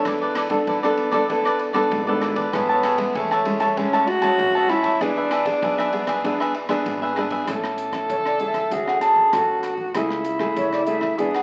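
A straight 4/4 groove at 97 BPM in A major carries this joyful, playful samba and choro piece, with crisp picked cavaquinho (dropping out at 7.5 seconds) and fingerpicked classical nylon-string guitar up front, a woody, thumpy pizzicato upright bass in the background, and a dry compact cocktail drum kit with dark cymbals and punchy kick, while a mellow, breathy tenor saxophone enters at 2.5 seconds with a jazz-style solo full of subtone and scooped notes before an airy wooden baroque flute with vibrato and crisp attack takes the melody at 8.1 seconds, all in a large studio reverb and the vinyl crackle of a very old 78 rpm record.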